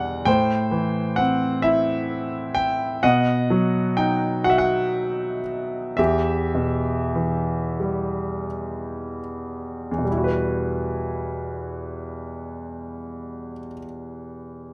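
A bright concert grand piano, close and intimate with its action noise audible, plays this melancholic, wistful classical solo in E minor at a rubato 6/8 pulse of 23-45 BPM, ranging from deep bass at E2 up to G5 through Am, B and Em in light reverb, slowing from 3.0 to 10.1 seconds before settling on an Emadd9 at 10.1 seconds in this fragment cut from a longer piece.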